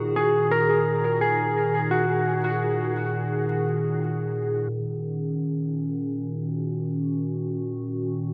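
Ambient music in free time and E-flat minor, deep and spacious, heard as a short cut from a longer piece. A warbling, nostalgic pad with a detuned, tape-like character holds sustained chords from start to finish at 8.3 seconds, its slow attack and long release softened further by chorus and its own reverb. Up front, a clean lap steel guitar plays a brief, twangy slide melody between 0.2 and 2.9 seconds, its bright tone trailed by dub echo. The harmony moves from E-flat minor to E-flat minor seventh at 4.7 seconds, where a filter sweep runs to the end. The whole mix is soaked in a huge, dreamy reverb, with vinyl crackle and a low-pass filter lending a hazy, lo-fi quality.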